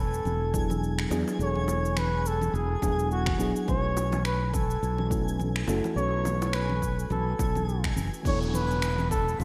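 Bathed in a lush hall reverb with a bright 1980s-style digital sheen, this relaxed, blissful sunset chillout excerpt moves at 105 BPM with a swung 16th-note feel in E mixolydian, drifting between E9sus4 and B9sus4. A breathy, mellow flugelhorn with light vibrato carries the jazz-style melody up front through a delay, over a soft, dark FM electric piano with chorus, a growly fretless electric bass warmed by tube saturation, and a sparkling granular texture twinkling in the background. Punchy overdriven electronic kick and layered electronic shaker, congas and finger snaps with gated reverb drive the groove, while round, low-tuned bongos sit behind them until 7.5 seconds and an electronic downlifter sweeps in at 8.3 seconds.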